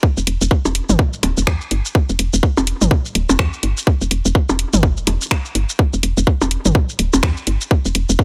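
A tight, overdriven electronic kick opens this cool, quirky minimal techno excerpt, set at 125 BPM in 4/4 with a 60% swing on the sixteenths and centred on E minor. Almost at once a woody FM bass joins, its soft, round, dark tone with a fast attack and a decaying tail sitting up front and pumping through sidechain compression. A layered garage drum kit of finger snaps, hi-hat and shaker enters alongside it, also overdriven and placed forward in the mix. Electronic percussion blips and toms slip in at 0.7 seconds, adding gritty, produced colour before dropping away at 7.2 seconds. A digital ambience surrounds the parts, and the passage plays as a single section cut from a longer piece.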